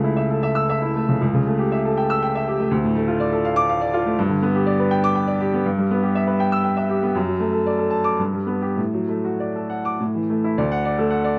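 A bright upright piano plays alone from the first moment of this excerpt from a hopeful, passionate romantic character piece in 3/4 that moves with free rubato between 95 and 127 BPM and settles into D major from 4.2 s. Its woody, brilliant tone rings with long sustain across a range from C#2 to E6, close and up front under light reverb, as the harmony passes through Dm, G and Em/G before coming to rest on D at 10.6 s. This short passage is cut from a longer piece.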